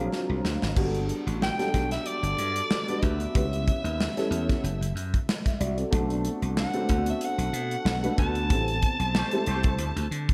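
A raspy, gritty soprano saxophone carries the melody from 1.4 s over a punchy, bright slap bass, a dark, boxy grand piano with ensemble chorus and slapback echo, and a tight, up-front acoustic drum kit that opens with a fill, while a distant horn section with light vibrato adds a brief second line at 9.2 s amid a closing band accent, all in a glossy, upbeat 1980s jazz-funk pop excerpt at 93 BPM in G major with a lightly swung 16th feel and a big arena sound.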